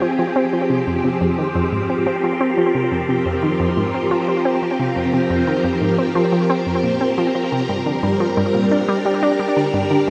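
Ambient, sequencer-driven space music at 88 BPM in F dorian, cosmic and hypnotic, where a swirling, vintage phased string machine holds slow-blooming sustained chords from Fm to Gm at 7.7 seconds while a round, nasal analog pluck with a wave-folded bite repeats a riff through chorus and tape echo, both parts up front in a dreamy mix soaked in a huge reverb.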